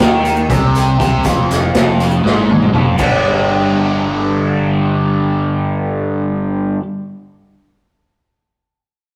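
In a straight 7/8 pulse, this hypnotic, trippy psychedelic rock excerpt is built on a bright, double-tracked, overdriven guitar riff with phaser, underpinned by a round fuzz bass, while a gritty garage drum kit with a boomy kick and a faint, grainy shaker push the opening stretch. The drums close with a fill ending at 3.0 seconds, where the harmony shifts from an F5 power chord to G, and guitar and bass carry on by themselves to the end. The rough rehearsal-room sound has moderate stone-room reverb and saturated colour.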